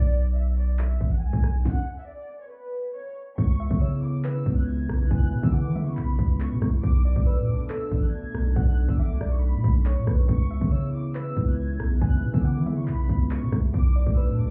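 Tense and dark, this excerpt of half-time drill hip hop moves at 139 BPM in 4/4, set in C# phrygian over chords that move between Bm, C#m7 and Bm7. A studio violin section carries the melody from the start, bowed with light vibrato and a soft attack, sitting low in the mix behind a low-pass filter and tape echo. Beneath it, a long, sine-toned 808-style bass with a fast attack and mellow decay holds the bottom up front, joined at 0.4 seconds by an electronic drill kit of hard-clipped kick, sharp snare, crisp hi-hats, handclaps and rim clicks. A stop breaks the groove at 1.7 seconds, and at 3.6 seconds a moody, detuned sawtooth pad with a sub octave and slow attack arrives alongside a gentle, round pluck, both treated with chorus and the pluck also with tape echo. The whole mix sounds as if heard muffled through a wall, with club reverb giving it a distant, enclosed air.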